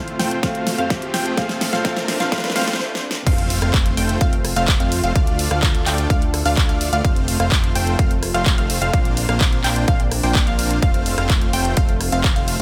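A huge, thick, detuned supersaw riff drives this uplifting, triumphant festival progressive house excerpt in F major at 127 BPM, its filter sweeping through a build-up with a riser, drum fill and a dark, mellow piano that stops at 3.3 seconds, when the drop lands with an impact, all over a punchy up-front kick, a huge snare, a fat, nasal analog bass, sidechain-pumping lush pad chords and punchy unison pluck arpeggios that play from the start, moving over F, Bbadd9 and Dm.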